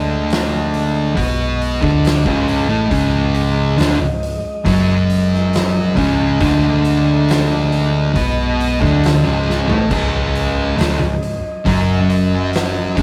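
A rough rehearsal-room recording with light reverb carries this heavy, ominous stoner and doom metal cut at 69 BPM in 4/4, opening on a C#5 chord as two thick, distorted fuzz guitars grind out a low riff, one pushed up front, over a round, overdriven hollow-body short-scale bass, while a mellow, flute-like tonewheel organ with key click holds sustained chords through a slow rotary speaker and an oversized low-tuned acoustic drum kit with a fat snare, punchy kick and shadowy cymbals enters at 0.3 seconds and plays a fill at 9.5 seconds.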